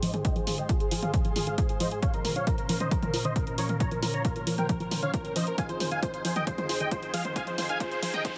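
Driving and emotional, this uplifting trance build-up at 135 BPM, cut from a longer piece, sets a huge, detuned supersaw melody up front over silky, chorused string-pad chords and a mellow pluck arpeggio in the background, all three pumping against a punchy, tape-warm electronic kick that enters at 0.2 seconds, while an analog drum machine's hi-hat and toms drive a fill from 5.6 seconds, filter sweeps run across the supersaw and arpeggio through the whole passage, and a very quiet riser arrives at 7.5 seconds as the chords move from Abmaj7 through Bbmadd9 to Fm7.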